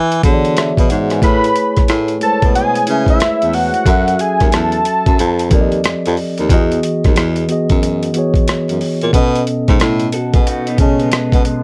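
Sensual and relaxed, this short excerpt of swung neo-soul R&B in E major moves at 91 BPM over an E7, Amaj7, F#m7, F9, Emaj7 and B7 progression, with a clear, subtoned baritone saxophone carrying the bass line with light vibrato and scooped notes beside a gritty, compressed boom bap kit of thumpy kick, hi-hat and rim click. A mellow tine electric piano supplies clean accompaniment throughout, while a fat, warbling analog lead with chorus sings the melody from 1.2 to 5.8 seconds. At 10.1 seconds a slightly broken-up, lo-fi electric guitar through a small old amp slips in with a phaser, all set in light reverb.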